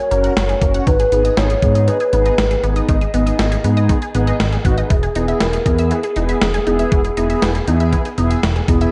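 A dreamy, reverb-soaked mix with a softened top end and a moderate plate reverb opens this short synth-pop fragment, bright and upbeat at 119 BPM in a straight 4/4. A gated 80s digital drum machine sits up front, its thumpy kick, hi-hat and gated-reverb snare carrying a tape-warm, sampler-style character, while a smooth gliding synth bass, dark and detuned with vibrato and portamento, anchors the low end alongside it. A hollow, woody clarinet-like lead with chorus and tape echo carries the melody from the very start, lasting until 8.4 seconds. Beneath it, mellow synth brass supplies round, brassy accompaniment with chorus and a filter sweep. A resonant blip pluck, juicy and squelchy with phaser and tape echo, spins arpeggios through the passage. The harmony moves from F#add9 to G#m, then settles on Emaj7 at 4.9 seconds.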